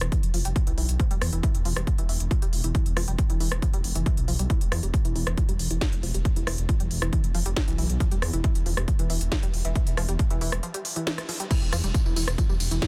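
Driving peak-time techno in E phrygian at 137 BPM opens at once with a dark detuned saw bass rumbling deep beneath a tight sequenced synth riff, both pumping against the kick from the start. The electronic kick drum lands up front and heavy almost immediately, with a tape-warm, small-room character, while the techno drum kit adds a cracking, soft-clipped snare, smooth hats, ride, rim click, tambourine and crash. The synth riff stays in a narrow range around E3 to G3, its wave-folded sawtooth and pulse tones plucked through a filter and coloured by chorus, phaser, tube saturation and digital delay. Beneath it the sawtooth bass beats with a saturated, sustained weight. The mood is industrial and dark, held in a dense, heavily limited modern master with digital ambience. A break arrives at 10.6 seconds, a band accent hits at 11.1 seconds, and the drop lands at 11.5 seconds to carry this cut from a longer piece to its close.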